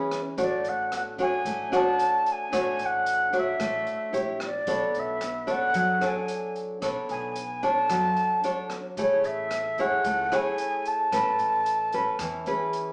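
A straight 4/4 bossa nova groove at 112 BPM, tuned to A4 = 436 Hz, sets a relaxed, romantic mood in this short cut from a longer piece. A mellow silver concert flute carries the melody up front with a crisp, chiffy attack and a straight but unsteady tone that still sounds distant, while a fingerpicked classical nylon-string guitar with fresh strings sits equally forward, moving through Dmaj7/A, A#dim7, Bm9 and F#m9/A before settling on Amaj9. An open, polished jazz kit with a boomy kick, hi-hat and rim click joins at 0.1 s, and a woody pizzicato upright bass on steel strings stays in the background, all heard as a band playing live in one room through a wet large studio reverb with a small-speaker character.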